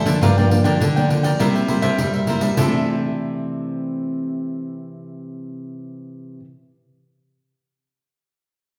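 Sunny and playful, this short excerpt from a longer samba and choro piece moves at 102 BPM in a straight 4/4 feel in C major. A bright, crisp cavaquinho picks out accompaniment high in the range while a fingerpicked nylon-string guitar with fresh strings fills the middle, its finger squeak audible and its classical tone placed up front. A second nylon-string guitar carries the bass line with a full-bodied, deep classical sound, also up front. A jingly pandeiro played with hard hands adds percussion until 2.7 seconds, and its small-room character sits inside the recital hall's generous reverb of 1.6 seconds. The harmony moves from Gm7 to C7 before settling on C69 at 2.6 seconds.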